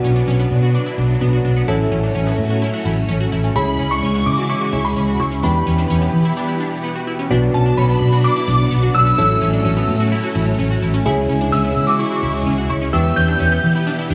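A shimmering, dreamy FM bell carries the melody from 3.6 s to 13.6 s, sitting up front with ensemble chorus, phaser and analog delay, in this melancholic, cool synth-pop excerpt. Beneath it, a round, foam-muted vintage electric bass sits forward, joined by soft electric-piano-like synth keys with chorus, a lush, warbling string machine holding sustained chords, and punchy, detuned pluck arpeggios through phaser and delay, all moving through a Bm, A6, C#m, Em progression. A short break arrives at 6.4 s before the second section, and spring reverb, vinyl crackle and studio ambience lend the recording an aged patina.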